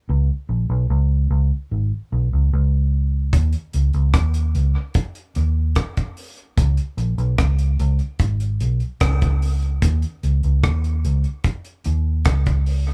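A dark, round, foam-muted vintage electric bass opens this heavy, meditative dub reggae fragment alone in its deep low register at 74 BPM, up front and amped, until a dry, up-front acoustic reggae drum kit with a tight kick, hi-hat and rim click enters at 3.3 seconds, all in a nearly reverb-free sound that is cut from a longer piece.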